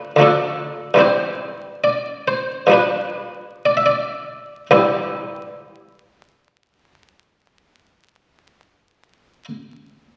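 This is a short classical passage in baroque style, a suite movement for solo harpsichord in C major and 4/4, taken from a longer piece. The mood is dance-like and flowing, with an unhurried tempo between 54 and 78 BPM and a rubato feel that slows down through the opening phrase until 4.7 seconds. The harpsichord, played with its buff stop, has a muted, lute-like, plucked tone in the Italian style, airy yet dry and up front, ranging from C2 to E5 across its 9.5 seconds. The harmony moves from D minor to C over G, then G7, before resolving to C as the second phrase begins at 4.7 seconds. The sound carries the crackle of a very old 78 rpm record, set in a scoring stage with a reverb that lingers about 1.6 seconds.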